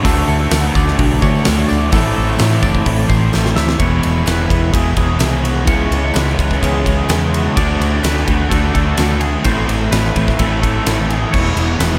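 Dreamy and wistful, this shoegaze and dream pop cut from a longer rock piece moves at 128 BPM in a straight 4/4, centred on E mixolydian with chords shifting from D and Am to E and C#m7. A twangy clean electric guitar picks arpeggios on top through analog chorus and delay, while three guitars sit further back: a mellow, dark clean guitar fingering a riff through reverse reverb, a raw double-tracked garage guitar with overdrive, and a thick fuzz guitar thickened by distortion and ensemble chorus. A vintage foam-muted fingered bass gives a round, punchy low end. A huge arena drum kit stands up front with a fat snare and punchy kick across crash, hi-hat, ride and snare, and a very quiet, jingly tambourine plays from 0.1 to 11.9 seconds. A drum fill at 3.3 seconds leads into a new section at 3.8 seconds, and the whole mix is soaked in a vast ambient reverb.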